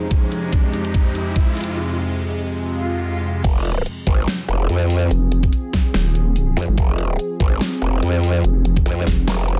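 A dense, heavily limited modern master with little reverb carries this aggressive, chaotic heavy wobble dubstep cut at 144 BPM in half-time F minor, where an evolving, detuned wavetable pad with phaser sustains an F minor chord throughout as an electronic riser and swell and a soft, breathy pad open the build-up alongside a drum fill, before the drop at 3.4 seconds brings in a saturated, growling bass, joined at 5.1 seconds by a nasal, resonant vowel-sweep wobble bass, over a knocking, up-front electronic kick and a tape-warm dubstep kit of huge snare, bright hi-hats and crash cymbal.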